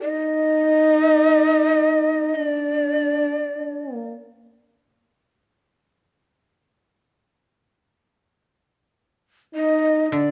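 Rubato phrasing in 2/4 gives this meditative, austere fragment of Japanese chamber music, cut from a longer piece, a floating, unhurried feel. A breathy, bamboo-toned shakuhachi carries the melody with vibrato, tongued chiff and expressive shading, while a distant, soft-attacked French horn in classical style adds a mellow second line an octave lower. The horn sounds until 4.1 seconds and the shakuhachi until 4.2; the horn returns at 9.5 seconds and the shakuhachi at 9.6. A dry, woody koto, plucked with fingerpicks, adds a low D at 10.1 seconds, all set in light reverb with a dark production.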